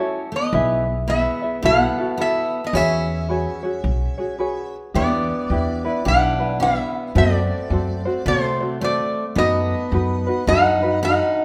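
A bright, nasal resonator slide guitar played with fingerpicks carries the melody up front in this relaxed, dreamy Hawaiian excerpt at 109 BPM with a swung feel, over a full-bodied picked jumbo steel-string acoustic guitar playing a second line, a light thumb-plucked tenor ukulele, and a woody, thumpy pizzicato upright bass that enters at 0.5 s, all in a moderate recital hall reverb as the harmony shifts from E major to E minor at 4.9 s.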